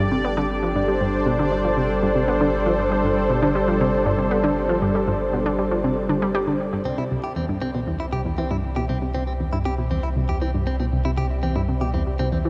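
Mysterious and hypnotic, this sequencer-driven space music cut from a longer piece moves at 118 BPM in 4/4 over Gsus4 shifting to C at 6.9 seconds, with a lush, detuned sawtooth pad holding sustained chords and a round, wave-folded analog pluck riff up front, both with chorus and shimmer reverb, a deep sine sub bass beneath, a bubbling, resonant stepped-filter texture in the background until 6.9 seconds, then a clean, direct-recorded electric guitar picking compressed arpeggios through analog delay, all set in a vast, echoing space with cassette tape character.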